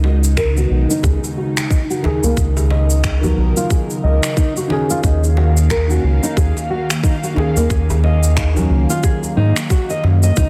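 A dense, heavily limited modern mix with light digital ambience frames this mystical, earthy stretch of organic downtempo, cut from a longer piece and riding a swung 16th-note feel over a Db9sus4 that moves to Ebm7 at 5.0 seconds. An up-front round analog bass with a deep, ring-modulated edge and a tight, tape-warm electronic kick entering at 0.4 seconds anchor the groove, while a cracking djembe and overdriven electronic shaker and finger snaps, with soft clipping on the snare, fill out the percussion. Over them, fingerpicked nylon-string guitar arpeggios with tape echo and a felt-muted upright piano with audible action noise both carry filter sweeps throughout, and a breathy, detuned pad holds sustained chords with chorus and sidechain pumping.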